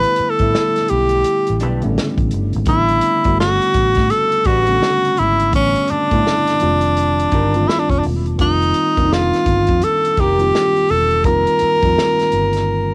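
Sultry and smooth, this short neo-soul R&B excerpt moves at 84 BPM with a swung sixteenth-note feel, its breathy, close-miked tenor saxophone leading up front in a jazz style with scooped notes and a cassette-tape tint, over a worn, slightly out-of-tune tine electric piano and a dark, foam-muted fingered bass. A roomy, distant soul drum kit with a tight kick and rolled-off top keeps time until a fill at 12.7 s, while an electric guitar through a small old amp, slightly broken-up and lo-fi, adds a quiet second line from 1.6 to 10.4 s. The harmony shifts from A9sus4 to F9sus4 at 6.6 s, and the whole has the dry, intimate sound of a home cassette recording.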